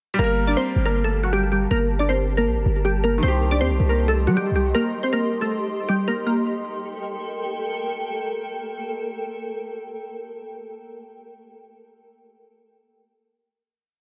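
Menacing and dark, this short trap piece moves at 158 BPM with a half-time feel in G minor, sketched over a Gmadd9 to Cm change before settling back on Gmadd9. A glassy wavetable pluck carries the looping melody up front, its crystalline, nasal tone detuned and doubled in octaves, with chorus, digital delay and a filter sweep giving it a digital sheen. Beneath it, a hard-hitting 808-style bass lands punchy, heavy sub-bass notes with pitch slides and a noise layer, holding the low end until 4.7 seconds. A bright grand piano repeats polished, open-voiced held chords like a sampled loop, softened by a low-pass filter and sitting lower in the mix. A granular cloud pad fades in slowly with blurred, evolving sustained chords and its own reverb, carrying the final chord alone after the pluck stops at 7.4 seconds and ringing out to 10.1 seconds. The whole recording has light reverb and a dark top end.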